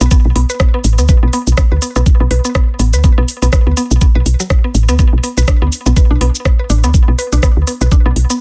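A dry, dense and heavily limited mix carries this hypnotic, sparse minimal techno excerpt in B minor at 123 BPM, with a swung 16th-note feel over a single Bm chord. An up-front, knocking electronic kick anchors the groove beside a round, woody FM bass with sidechain pumping, while a layered garage kit adds metallic hats, rim click and shaker, its snare softly clipped. Above them, a bright, mallet-like FM pluck with a noise layer plays a riff through chorus, phaser, delay and sidechain pumping.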